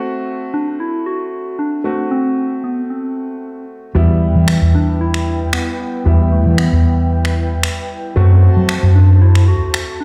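A baby grand piano with open, long-sustaining tone opens this energetic, driving dance-pop excerpt at 114 BPM, quickly joined by a round, gentle, keys-like FM lead carrying the melody through chorus and digital delay, before an airy, breathy pad with a slow attack and a dark, foam-muted electric bass sitting up front arrive at 4.0 seconds, followed by layered, tape-tinged electronic finger snaps at 4.5 seconds, all moving between F#dim and Em as if played on a big sound system in a bare stone room.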